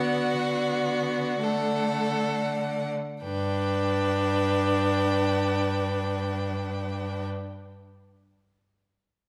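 A moderate reverb, like that of a scoring stage, gives this slow, romantic string quartet movement in G major a soft halo. It is a brief, serene and tender passage cut from a longer piece, played with rubato at around 32-38 BPM in 4/4 and slowing through its opening 3.2 seconds. The first violin carries the melody in a rich, smooth tone with vibrato, sitting quieter in the balance than its partners. Beneath it the second violin adds a focused, close line, while the viola's even, up-front accompaniment and the cello's bowed bass complete the texture. The harmony rests on D before settling onto G at 3.2 seconds, where a new section begins, and all four players continue together with vibrato until 7.3 seconds.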